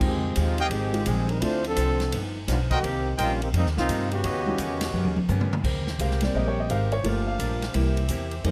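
Dry, close and detailed, this energetic, brassy big band swing excerpt moves at 171 BPM in Ab major, carried by a woody pizzicato upright bass up front, a swinging drum kit with dark cymbals and a punchy kick, and a boxy picked acoustic guitar in the background. A brilliant trombone section takes the lead through the opening, punctuated by tight trumpet stabs and a drum fill that closes the phrase, while an upright piano with short sustain plays briefly at the start and returns near the end of the trombone passage. From 5.6 seconds the piano takes a solo over bright, close-miked saxophone chords with vibrato, as the harmony moves from Fm9 toward Abmaj9.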